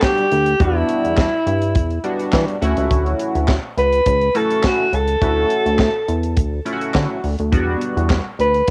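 Danceable and slick, this early-eighties boogie funk passage, cut from a longer piece, moves at 104 BPM in a straight 4/4 over Em7 and Dmaj7. A breathy alto saxophone carries the melody with light vibrato and a whispered, intimate jazz tone. Beneath it sit a mellow chorused polysynth with phaser and filter sweep, a dry, tight funk drum kit with a high-tuned snare, handclaps and hi-hat, and a glossy, wave-folded synth bass with a filter pluck that enters at 0.3 seconds, all set in a home cassette recording with faint mains hum and light small-room reverb that gives the sax, polysynth and drums a retro tape coloring.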